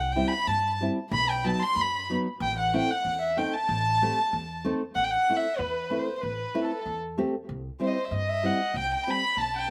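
In a straight two-beat feel that gradually speeds up, this soulful, bittersweet klezmer excerpt sets a dark, woody lead violin with vibrato over a soft, airy second violin touched by slapback echo, fingerpicked classical nylon-string guitar with audible finger squeak and its own slapback, and a growly pizzicato upright bass, all captured dry outdoors, with the lead violin taking a solo from 5.0 seconds.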